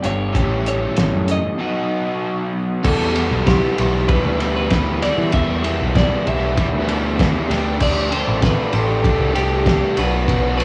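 A restless, cool indie rock fragment in E minor at 97 BPM opens with a twangy, compressed twelve-string electric guitar melody over two crunchy overdriven guitar riffs, one up front and one set back with analog chorus and tape echo, a growling overdriven picked bass, and a cloth-damped, thuddy drum kit with a fat snare, tight kick and dark, muffled cymbals. A break at 1.6 seconds, on a B chord, leads into a longer section from 2.8 seconds that moves from Em to Dsus4 and then Bm. The home cassette recording in a small room gives the drums a gritty, saturated, rolled-off character, while tape echo trails the clean, bright twelve-string.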